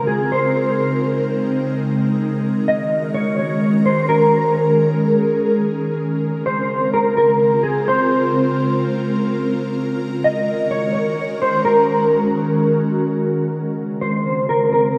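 A dark, clean electric guitar carries the melody through ensemble chorus, a low-pass filter and analog delay, over a detuned, airy sawtooth-and-triangle pad with slow attack, long release, phaser and its own chorus and reverb, in this melancholic, spacious half-time hip hop excerpt at 127 BPM in Bb minor, moving between Bbm9 and Gb69 chords in a dreamy mix steeped in a lush 2.5-second hall reverb.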